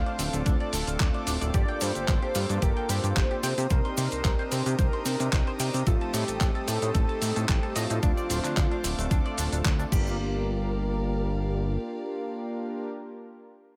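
A swung 111 BPM nu-disco groove in G minor, sleek and cosmic, is driven by an overdriven, knocking electronic kick up front, a gritty sampler-style soul drum kit with hi-hat, handclaps and crash, and a very quiet cabasa, all of which drop out by about 10.2 seconds, while a fat, detuned sawtooth bass with tube saturation and filter sweeps anchors chords from Dm7 through Cm7 and Am7b5. Over it, a bold, dark unison lead with vibrato and digital delay carries the melody, a smooth analog pad pumps with chorus and tape echo, a bright chamber violin section with vintage sampler grit holds sustained chords in the background, and a twangy, clean, direct-recorded electric guitar picks a lush chorused riff in this fragment of a longer piece.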